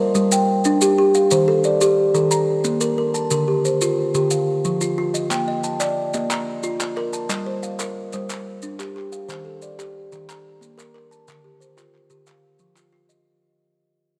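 Southern African traditional music in a rippling, warm mbira-style interlocking cycle at 120 BPM in 12/8, in Bb major, where a woody, ringing kalimba plucked with the fingertips spins mellow arpeggios up front over close, grainy maracas, with crisp, close group handclaps joining at 5.3 s, set in a long plate reverb as this fragment of a longer piece fades out across its full 13.3 seconds.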